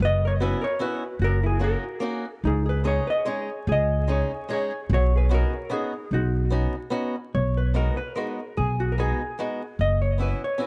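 A dark, clean hollow-body jazz guitar carries the melody with tape echo over a growly, woody pizzicato upright bass and a boxy fingerpicked swing-style acoustic guitar entering at 0.4 seconds, in this whirling, nostalgic musette waltz excerpt in B major at 148 BPM, with a lightly swung 3/4 lilt, small-room ambience and a dusky production flecked with vinyl crackle.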